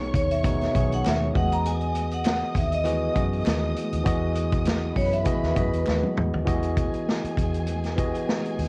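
A lush, smooth 1970s-style soul passage opens with a bright, barky tine electric piano placed up front and lightly overdriven through a combo amp, a dark, round, foam-muted fingered bass, and a warm bowed violin section carrying a second line with even vibrato. A vintage acoustic drum kit joins almost at once, its punchy kick, medium-tuned snare, hi-hat and toms sitting mid-forward with a rolled-off top, while the groove swings gently on sixteenths. At 0.2 seconds a hard-mallet vibraphone takes the melody, metallic and ringing with a slow motor vibrato, and it plays until 6.1 seconds as a drum fill leads toward a new section. Very quiet, high-tuned congas sound distant in a large room, and a hollow group handclap adds a faint human touch until 6.0 seconds. The harmony moves from B69 to Emaj9, and the cassette-tape character of a home recording with light reverb gives this excerpt an aged sheen.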